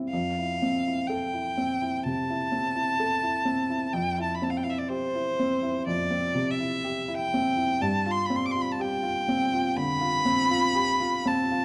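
Pastoral and dreamy, this impressionist classical duo drifts at a rubato 62 BPM in C major through Fmaj7, C/F and G7sus4, with a clear, focused violin carrying the bowed, vibrato-rich melody high above an intimate baby grand piano whose short-sustained accompaniment shows audible action noise, both up front in a dark, warm production with moderate large-studio reverb.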